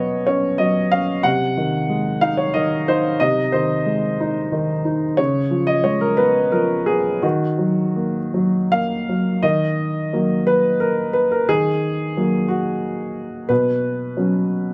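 Set in an unhurried 3/4 at 90 BPM, the playing moves with a loose rubato that lets each bar breathe. This is neoclassical minimalist piano in Eb minor, tuned slightly low at A4 = 439 Hz, with a melancholic, reflective mood. A solo grand piano carries the whole fragment, its tone smooth and vintage in character, placed up front and ranging from B2 to Gb5. The harmony drifts from Bsus2 through Ab7/C and Db7 before settling on Ebm at 7.2 s, then a new section opens at 9.4 s and returns to Bsus2 near the close. A light reverb gives the instrument a gentle sense of space in this short passage cut from a longer piece.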